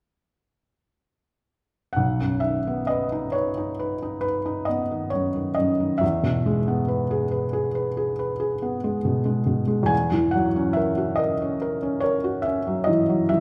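A classical romantic nocturne for solo piano, this short excerpt cut from a longer piece moves at a slow, rubato 46 beats per minute in 9/8, set in B major with tuning at A4 = 442 Hz. The mood is dreamy and serene. A felt-muted upright piano carries everything from 1.9 to 13.4 seconds, ranging from B1 up to G#5, its tone soft, mellow, warm and intimate, with short sustain and audible action noise, and it sits up front. The harmony moves from B to E at 6.0 seconds and then to F#7/E at 9.9 seconds. Around the instrument, a wet recital hall reverb with a 1.6-second decay places the listener further back in the room, lending the hushed playing a gentle sense of space.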